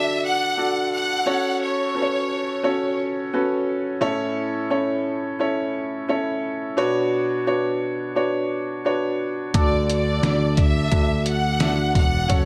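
A moderate, large studio reverb gives this anthemic, piano-driven pop piece a spacious, polished sound. A clear concert grand piano carries the accompaniment throughout, up front with deep bass and long sustain as the chords move from D through F#m and A to Bmadd9 before settling back on D. A bright, lush violin section bowed with vibrato states the melody at the start, drops out by 3.0 seconds, and returns intensely near the end. At 9.5 seconds a trip hop sampler-style drum kit enters, compressed, muffled and pitched down, with a thumpy kick, a medium-tuned snare and hi-hat in a straight 4/4 feel. A picked electric bass joins at the same moment, round and warm, for a full, uplifting close to this cut from a longer piece.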